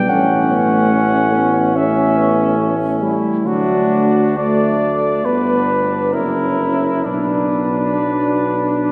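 In a flexible rubato 4/4, this tender, lyrical hymn-like classical fragment for brass band, cut from a longer piece, sets a mellow, close-miked cornet melody up front over a flugelhorn second line with light vibrato, a clear, vintage-toned euphonium and a smooth-topped trombone section in the background, and a tuba bass placed up front, heard within a wet church reverb as the harmony moves from A through D, G and F#7 to Bm.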